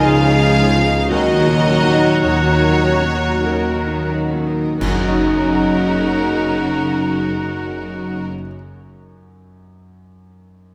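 Hopeful and moving, this slow, rubato cinematic film-score excerpt in 3/4 and F# major sets a rich violin section's melody, played sul tasto with light vibrato, over a bright solo oboe, a dark clarinet, a second violin section and an airy flute section. Beneath them, a felt-muted upright piano with audible action noise, violas, a mellow French horn section, a ringing fingerpicked concert harp, and cellos and double basses supply chords, arpeggios and bass in a spacious scoring-stage reverb, as the tempo slows before clash cymbals and concert bass drum mark an accent at 4.8 s. The orchestra falls away at 8.3 s and the harp at 8.7 s, leaving the intimate piano to continue until 10.7 s.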